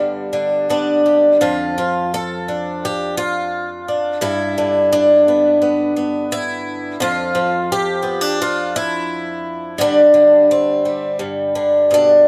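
A picked twelve-string acoustic guitar, bright and shimmering with octave-doubled strings and a boxy body, plays alone and up front in this hopeful, pastoral folk excerpt at 86 BPM in straight 4/4 with tuning at A4 = 443 Hz, moving from an opening G into a passage from 1.4 seconds that drifts through F6, G6, Dmadd9/F and Gsus4 before settling back on G, captured dry by close, detailed microphones.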